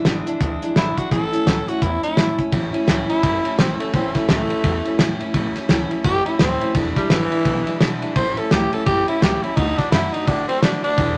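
Rockabilly with a retro, rowdy mood, swinging at 170 BPM in 4/4 in A major, cut from a longer piece. A bright, full-bodied picked steel-string acoustic guitar opens the accompaniment at 0.0 s, joined almost at once by a woody, thumpy pizzicato upright bass with gut strings and a cloth-damped, thuddy drum kit with a fat snare, tight kick and dark cymbals on hi-hat and ride. A growling tenor saxophone enters at 0.8 s, raspy and gritty with vibrato, close-miked and up front, and from 2.5 s it takes an edgy solo that runs to the end. The harmony moves between E7 and A before closing on D. A moderate club reverb gives the band a lively, roomy sound.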